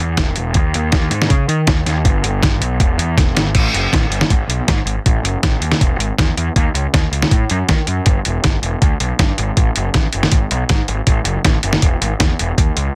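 This excerpt from a longer indie rock piece opens with a fuzz-drenched picked electric bass, bright and overdriven, sitting up front. A muffled, pitched-down sampler-style drum kit joins at 0.2 seconds with a thumpy kick, fat snare, hi-hat and crash, itself overdriven and pushed forward, and a drum fill at 3.2 seconds leads into a new section at 3.6 seconds. The mood is jangly and carefree, with a dry, dense and heavily limited modern sound.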